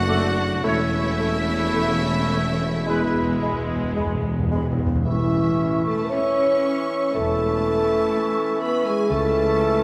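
Rubato and unhurried in 4/4 at roughly 53-63 BPM, this tender slow romantic movement for symphony orchestra in A major has lush, vibrato-rich violins carrying the melody while a second, very quiet violin section, a soft-attacked oboe, a clear clarinet and a hollow, crisp-edged flute section weave second lines above distant violas and a bassoon. Cellos, basses and a mellow tuba anchor the bass in the background, while a present, tight French horn section holds sustained chords from 0.6 s and a loose, roomy trumpet section adds stabs until 3.3 s. Calf-headed timpani struck with medium mallets play a fill from 2.9 s, all set in a generous concert hall reverb in this brief extract from a longer piece.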